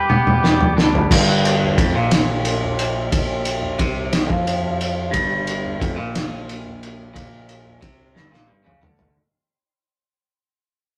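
Psychedelic rock with a hypnotic, trippy mood, moving at a slow 60 BPM in 6/8 with a straight feel, cut from a longer piece. A buzzy, overdriven combo organ with light vibrato sounds a brief G4 melody note only until 0.7 seconds, while a bright, twangy electric guitar plays a clean, picked riff from F2 to B4 throughout. A muffled, cloth-damped drum kit sits up front with dark cymbals, a fat snare and a tight kick, its gritty, saturated tone rolled off at the top, and it opens with a fill before another fill at 8.2 seconds. Fuzz bass enters at 0.3 seconds, round and punchy with overdrive, ranging from E1 to F2, while low-tuned congas with a thick-skinned, soft-handed touch sit very quietly in the distance. The harmony moves from G to G5 at 1.1 seconds, where a fade-out begins, all captured as a rough rehearsal-room recording with light reverb.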